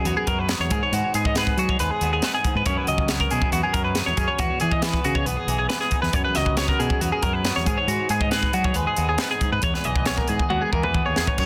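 A bright, clean twelve-string electric guitar plays up-front arpeggios through digital delay and plate reverb, over a softer, fingered twangy electric guitar accompaniment bathed in spring and plate reverb and a growling, overdriven fingered bass, in a bright, wistful stretch of math rock and midwest emo at 138 BPM in E major. A crisp fusion drum kit enters at 0.1 seconds with a high-tuned snare, a punchy kick and dark cymbals in an airy studio room, while the harmony cycles through F#7sus4, G#m7 and Emaj7. A drum fill arrives at 10.5 seconds, and the whole passage sits in a dense, heavily limited modern master with light reverb.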